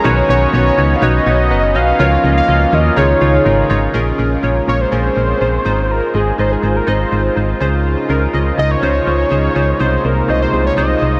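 An uplifting, glossy pop excerpt in a straight 4/4 feel, soaked in a huge, dreamy reverb that gives the whole mix a floating sheen. A fat, detuned sawtooth lead carries the melody with a sub octave, a filter sweep and vibrato, its tone mellow and sustained. Glassy, wave-folded digital keys with chorus and their own filter sweep play the accompaniment, while a shimmering, retro pulse-width pad holds sustained chords in the background. Up front, a punchy, round FM bass anchors the low end with a dark, decaying tone and a fast attack. A clean, direct-recorded electric guitar picks a very quiet, compressed riff until 4.5 s, just after the harmony brightens into a major-key section at 3.9 s and moves through chords like Bbm7, Ab6 and Dbmaj7.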